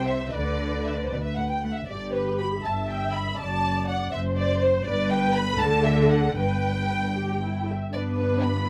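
In a flexible, rubato 6/8 lilt, this quick, lively and graceful classical-period string orchestra movement has a close, expressive violin section carrying the melody up front with warm vibrato, while a rich second violin line sits distant in the background. Distant, expressive violas fill in the accompaniment, and the bass is shared by smooth, even cellos and woody double basses that sit prominently up front. The whole ensemble is bowed and lush within light reverb, and the harmony settles between G and D chords before coming to rest on G.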